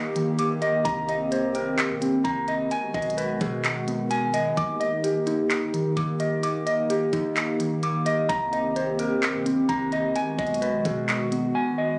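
A hollow, flute-like pad with chorus and a clean, fingered electric guitar playing arpeggios through tape echo open this dreamy, blissful atmospheric cloud-rap excerpt at 129 BPM in half-time, moving through Ebmaj7, Cm7 and B6 as a very quiet downlifter passes at 0.1 s; crisp hats, handclaps and a knocking kick from an up-front trap kit arrive at 0.2 s, while a round, deep 808-style bass sits in the background, the mix carrying light reverb, compression and the studio ambience of a phone recording in the room.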